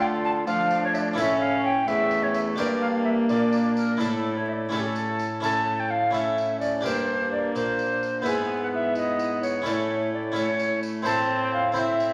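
Two airy tenor recorders with a wooden chiff open this solemn, courtly Renaissance-style consort dance in 6/8, carried over a brilliant, close-miked harpsichord, a nasal gut-string viola and a distant trombone bass, with a jingly tambourine joining at 0.5 seconds, the whole fragment of a longer piece set in recital-hall reverb and vinyl crackle.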